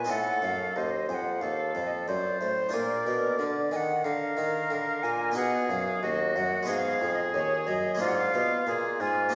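Solemn and grave, this brief baroque-style sonata excerpt in flexible rubato sets a mellow, hollow alto recorder with a tongued chiff and vibrato on the melody over an up-front oboe's second line, while a brilliant plucked harpsichord accompanies and a distant, roomy bassoon carries the bass, all playing throughout in a reverberant recital hall.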